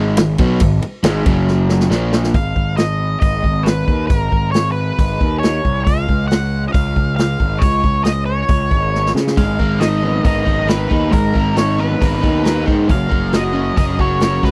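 A driving, swaggering slice of classic rock, cut from a longer piece, with a straight 4/4 feel and a dry, close 1970s-style studio sound. A crunchy, double-tracked overdriven guitar opens on the riff alongside a punchy, fuzzed-up picked bass, and a vintage drum kit with dark cymbals and a medium-tuned snare comes in almost at once, rolling a fill into the main section at 2.3 seconds. There the guitar drops out and a dark octave-fuzz lead guitar takes up the melody, its distorted tone carrying a slapback echo and sitting a little further back than the rhythm parts. The chords move from G#m through C# before the overdriven riff guitar returns at 9.4 seconds on a G#madd9, following a second drum fill. Bass, drums and riff guitar stay up front, giving the whole passage a gritty, in-your-face weight.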